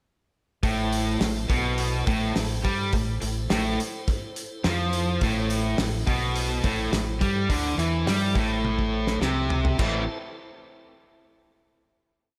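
Classic rock in a gritty, driving mood: from 0.6 seconds a bright, up-front overdriven electric guitar and a dark, hollow-bodied semi-hollow guitar with slapback echo play a single-note riff, doubled by a round, punchy fingered bass in driving eighth notes. A cloth-damped, thuddy drum kit with a fat snare, tight kick and rolled-off top sits up front in a small room, while a very quiet, piping tonewheel organ with key click and slow rotary vibrato holds chords with swells and changing inversions. A drum fill at 8.7 seconds leads into a final chord that rings until 12.1 seconds.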